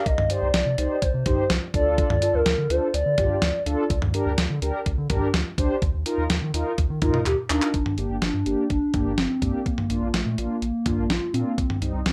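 Cool and driving, this short synth-pop cut at 125 BPM in G minor sets a thumpy, up-front 12-bit drum machine with handclaps and a round analog bass under sustained, detuned sawtooth synth brass, while a hollow, woody clarinet-like lead with vibrato, chorus, plate reverb and tape echo carries the melody until 3.6 seconds and returns alongside a drum fill at 7.3 seconds, all in a small room.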